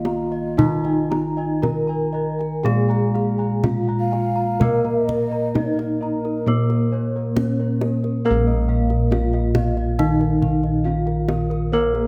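The low bossed gongs stand out most, anchoring this ceremonial, shimmering Javanese gamelan excerpt with round, beating bronze tones from Bb1 up to Bb4, while a second set of bossed gongs plays bright arpeggios higher up. Three bronze metallophones carry the melody, a lower accompaniment and a further arpeggio line at a stately 57-69 BPM in 4/4 in Bb slendro. One metallophone, struck with padded disc mallets, sounds mellow and soft with the shimmering beats of paired tuning. A horn-mallet metallophone rings brightly, sitting somewhat forward in the mix, and a wooden-mallet one floats airily in the background. A hollow, bamboo-toned bass bansuri adds a tongued second line with vibrato until about 7.5 seconds, and the kendang enters at 0.1 seconds with tight, dry, soft hand strokes. The close, detailed recording has a light reverb, and the piece moves into a new section at 8.3 seconds.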